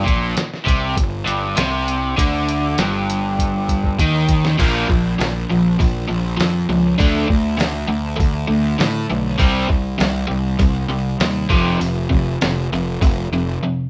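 Brooding and driving, this short classic rock cut moves at 100 BPM in a straight 4/4, centred on G minor. An overdriven, double-tracked electric guitar carries the riff up front, its picked tone compressed and warm, while a bright, fuzz-drenched picked bass growls beneath it from F1 to A2. A lo-fi, sampler-style drum kit sits equally forward, pitched down and muffled, with a thumpy kick, a fat snare, hi-hat and crash cymbal. After an opening on G minor, a drum fill from 3.4 to 4.6 seconds ushers in a new passage that steps through Bb5, D5, Cm and F5. The band sounds like it is playing live in one room, wrapped in a moderate studio reverb, and the piece is cut from a longer performance.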